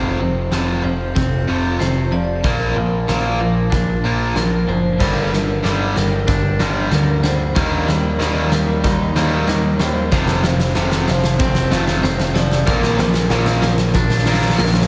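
This melancholic, cinematic post-rock passage, cut from a longer piece, opens at a straight 94 BPM in 4/4 with a cranked stack guitar riff, overdriven and up front with spring reverb. Beneath it sits a growling, punchy picked bass with overdrive, plus a very quiet granular cloud pad of blurred, detuned, slowly evolving chords. Twangy, scooped clean guitar arpeggios sit in the background, with ringing hard-mallet vibraphone arpeggios carrying a fast motor vibrato and a vintage, band-limited tone; both have slapback echo. A huge arena drum kit with a fat snare and punchy kick arrives at 0.5 seconds and drives the whole section as one long build-up and drum fill. At 5.0 seconds a very quiet, compressed fuzz guitar enters with a riff of its own over a progression that moves through F, Bb, G minor and E-flat, all set in a lush hall and a big arena sound.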